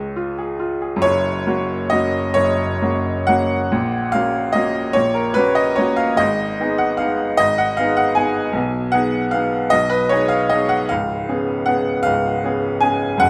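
A romantic classical nocturne for solo upright piano drifts in a nostalgic, dreamy rubato 6/8, its bright, woody tone ringing with long sustain up front under light reverb and close, detailed miking, as the harmony moves from F# through G#m to a C#7 that hangs unresolved where this fragment of a longer piece breaks off at 13.3 seconds.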